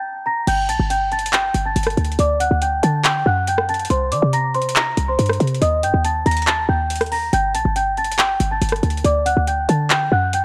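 A half-time trap groove at 140 BPM in 4/4 drives this dark, eerie hip hop excerpt in G harmonic minor, where a worn, bell-like celesta with soft felt hammers, slightly out of tune and carrying tape echo, plays the melody alone until 0.5 seconds, when a punchy, tight 808-style bass with a noise layer and an electronic kit of metallic hi-hats, handclaps, rim clicks and crash cymbal arrive up front over chords moving from Gsus2 through Dsus4, C7(no3) and Eb, all set in light digital ambience.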